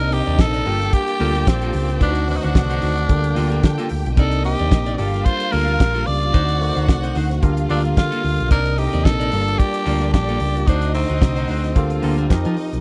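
Glamorous, danceable disco in G minor at 111 BPM with a light sixteenth-note swing, where a growling, raspy tenor saxophone carries the melody over a lush, bowed string section, a barky, slightly out-of-tune tine electric piano and a clean, dark electric guitar in the background, a very quiet tonewheel organ with key click and slow rotary speaker, a round, hollow-body picked bass up front, and a damped 70s drum kit with a fat snare and tight kick entering at 0.1 seconds, all captured in a dry, close 1970s-style studio sound as the chords cycle through Cm9, Gm9 and D7b9 before closing on F7sus4 at 12.3 seconds.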